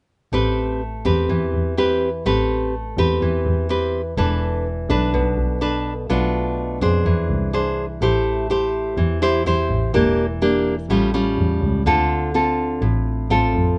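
At 0.3 s a fingerpicked nylon-string guitar and a bowed double bass begin together in a wistful, intimate bossa nova in A minor, moving at 125 BPM in a straight 4/4 and tuned slightly sharp to A4 = 441 Hz. The full-bodied acoustic guitar sits up front with a deep classical tone, carrying the accompaniment across a span from A2 to C5. Behind it, a single double bass player sounds distant and expressive, shaping low notes with vibrato and portamento and lending the bottom end a warm glow. The harmony opens on Am9 and drifts through E7sus4, Bm7b5 and Eaug7 before a new section at 8.0 s moves through Am7, Em7b5 and A7b13 to settle on Dm7. Light reverb gives the pair a small sense of space, and the soft top end keeps the sound mellow until this fragment of a longer piece cuts off at 13.8 s.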